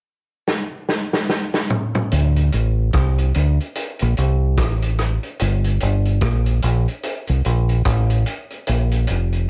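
Hypnotic and deep, this short fragment of dub reggae moves at an unhurried, swung pace in 4/4. A vintage drum kit with a punchy kick, a rolled-off top and the grain of cassette tape opens with a fill from 0.5 seconds. At 2.1 seconds a dark, round fingered electric bass enters low and up front, giving the home-recorded groove a close, dry weight.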